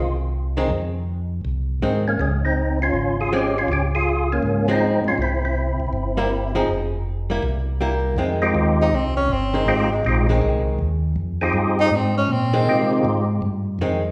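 Late-night and soulful, this swinging jazz excerpt, cut from a longer piece, opens with a fat, lightly overdriven tonewheel organ carrying the melody, its third-harmonic percussion, key click and chorus vibrato turning through a slow rotary speaker. Beneath it, a second tonewheel organ holds down the bass with a round, dark tone, also through a slow rotary speaker. From 0.6 s an amplified hollow-body archtop guitar adds a picked, compressed accompaniment with a clean, electric sound. At 8.8 s a breathy tenor saxophone steps forward for a jazz-style solo, its soft attack, scooped notes and vibrato giving the line a mellow, intimate voice. The parts sit up front in a resonant recital hall whose reverb lends the whole session a spacious, churchlike glow.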